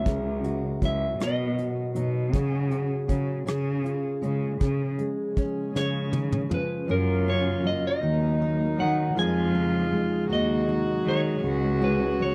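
A rich, bowed cello carries the bass up front, played by one player with expressive vibrato and portamento, in this nostalgic, hopeful acoustic folk-pop ballad cut from a longer piece. It moves at a slow 53 BPM in a straight 6/8, with a fingerpicked jumbo steel-string acoustic guitar giving full-bodied accompaniment while a clean, picked electric guitar sings the melody through a gentle tremolo. A soft brush kit with a punchy kick and medium-tuned snare sits close in the mix, adding hi-hat, rim clicks and toms, and it drops out after a fill that begins at 5.8 seconds. An airy, breathy pad with a detuned, chorused shimmer and a faint noise layer enters at 4.6 seconds, holding very quiet sustained chords. At 6.9 seconds a dark, pure-toned viola joins with a floating, soft-attack second line as the harmony moves from F# through D#m and C#add9/E# toward a closing C#sus4. The sound is dry and intimate, like a close 1970s studio session with little room around it.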